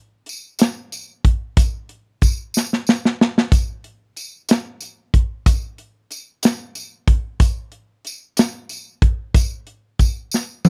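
A dry, close recording with a 1970s studio feel carries this short gospel excerpt, uplifting and reverent, moving at 62 BPM in a straight 6/8. A mid-forward acoustic drum kit sits up front with a medium-tuned snare, punchy kick, hi-hat and toms, its top rolled off, while a jingly, bright tambourine plays quietly beneath from 0.3 to 10.7 seconds. Drum fills mark the groove at 2.5 seconds and again at 10.3 seconds.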